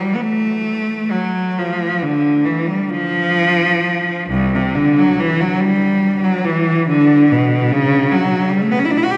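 Bathed in a cathedral-like reverb with a long 4.9-second tail, this mournful, meditative classical passage for unaccompanied solo cello, cut from a longer piece, unfolds freely in a rubato 6/8 as a single bowed cello sits up front with a clear, focused tone and expressive vibrato, ranging from C2 up to G4 across its 9.2 seconds.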